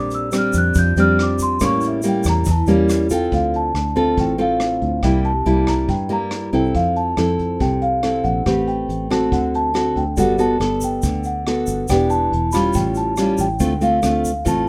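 A large celesta carries the melody in this intimate, melancholic bossa nova fragment, its bell-like, delicate tone sweet and ringing from soft felt hammers, opening with a solo passage over the first 3.3 seconds. Set in D minor at 140 BPM in a straight 4/4, with tuning at A4 = 438 Hz, the harmony moves from Bb69 and A7b9 into a Dm7 that leads on through C7, Fmaj7, Am9, D7, Gmaj9, Em7 and A7b13 before settling back on Dm7. Up front in the mix, a fingerpicked nylon-string guitar with fresh strings supplies a classical, warm accompaniment, while a fingered electric bass sits underneath with a dark, round, foam-muted sound taken direct and amped. A vintage brush drum kit plays hi-hat, kick drum and rim click with a punchy kick and a rolled-off top in a studio room. A grainy, bright, saturated tube shaker adds percussion at the start, drops out, and returns at 10.2 seconds. Light reverb gives the whole a soft sense of space.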